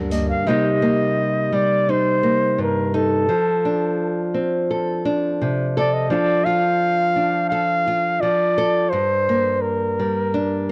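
A breathy, whispered flugelhorn carries an intimate, jazz-inflected solo melody with vibrato over fingerpicked nylon-string guitar in this heartbroken, melancholic folk excerpt at 85 BPM in C dorian, moving through Cm7, F6, Dm/F and Gm under light reverb and the warbly pitch drift of worn cassette tape.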